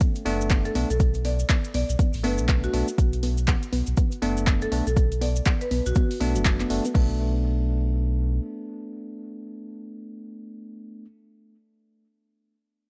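A hypnotic deep house excerpt in B minor at 121 BPM opens on a drop over a Bm7 chord: an overdriven, punchy electronic kick sits up front beside an overdriven analog drum machine's crash, handclaps and hi-hat, grainy cabasa, bell-like electric piano stabs with sidechain pumping and analog delay, and soft, round pluck arpeggios in the background with chorus and tape echo. A deep sine sub bass with octave enters at 0.3 s under sidechain pumping, and a woody marimba melody with 12-bit sampler grit and tape echo joins soon after. The drums and pluck stop around 7 s, the bass holds until 8.4 s, and the clean electric piano stabs carry on until 11.1 s, with a 60% swing on 16ths and a dry, gritty cassette-tape sound.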